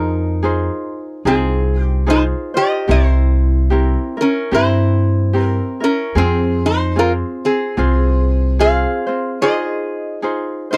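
The lap resonator guitar carries the melody up front, its slide tone metallic and nasal and played with fingerpicks between C4 and F5. This short Hawaiian excerpt moves at a languid 74 BPM in 4/4 with swung eighths, set in F minor yet sunny in mood. A light, fingerpicked ukulele supplies up-front accompaniment between C4 and C5 across the whole passage. Underneath, the upright bass plays pizzicato on steel strings with a woody tone in the low register from C2 to G2, dropping out at 8.8 s. The harmony moves from Fm7 to C7 and Fm, then opens onto Ab6 as a new section begins at 9.4 s. The sound is a dry, close 1970s-style studio recording with light reverb.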